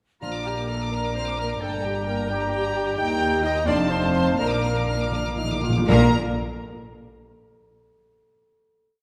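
At 0.2 s the full orchestra sounds together on a Bb major chord: a clear, focused violin section carries the melody high above with a rocking two-note figure, while timpani with hard mallets strike a single, articulate Bb on close, dry calf heads. This is a quick, lively and spirited classical-period movement in 6/8, felt in dotted quarters at about 77-88 BPM with a rubato feel. A pure, bright flute group, a distant oboe and a punchy bassoon play chords in the rhythm of the tune, and the bassoon answers at phrase ends. A mellow clarinet adds its own melodic line in the background, a rich second violin section and a smooth viola section double the tune in unison, and a very quiet French horn section doubles it at the octave. Underneath, a close, lush cello section holds sustained bass notes, doubled by the double basses, as the harmony moves through G minor, E-flat and F7 back to Bb. The music slows, the timpani return with a fill from 4.4 s, and a final chord from 5.9 s rings out in the wet reverb of a scoring stage.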